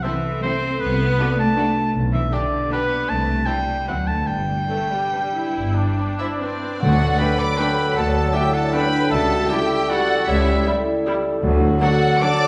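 A festive, sweeping orchestral ballroom waltz in 3/4 opens in G major at a rubato 134-173 BPM, with a rich violin section singing the melody over a clear cor anglais and a dark, very quiet second violin section, while a background viola section, mellow ringing harp arpeggios and a distant cello section fill in beneath, joined by a focused double bass section at 0.8 seconds. An airy, metallic flute enters at 6.2 seconds, and at 6.8 seconds the music shifts to D major as a very quiet clarinet, a background bassoon and a background French horn section holding sustained chords arrive, along with round, very quiet timpani strokes. The whole piece blooms in a reverberant hall and is cut from a longer work.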